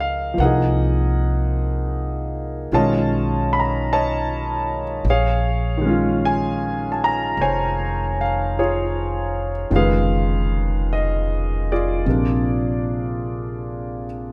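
Heard through a moderate large-studio reverb, this intimate, wistful jazz ballad fragment in Bb minor drifts at a slow 51 BPM with a gentle swing, as an up-front concert grand piano with audible action noise, deep bass and long sustain plays chords such as Cm7b5, Bbm9 and Bb7 while a woody, pizzicato upright bass with steel strings sits beneath it for the full 14.3 seconds.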